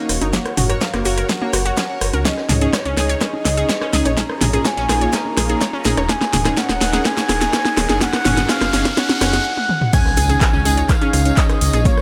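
Euphoric and hopeful, this progressive house excerpt at 125 BPM in Db major builds from 0.0 seconds over a deep, rumbling detuned saw bass, a punchy overdriven electronic kick, a pop drum kit with a fat snare and metallic hats, a distant brushed jazz kit, background analog drum machine congas and rim clicks, and a glassy wavetable pluck arpeggio with dub echo, all cycling through Gb, Dbsus2, Bbm7 and Ebm7. A smooth portamento lead carries the melody with vibrato over a lush, very quiet supersaw pad and glossy chorused polysynth stabs, while a sidechain pumping effect shapes the lead, stabs, bass and parts of the drums, a filter sweep runs through the build, and a riser joins at 5.3 seconds. After a brief break, the drop lands at 9.9 seconds with an impact, a jingly tambourine and a soft, round high pluck line, all set in light digital reverb.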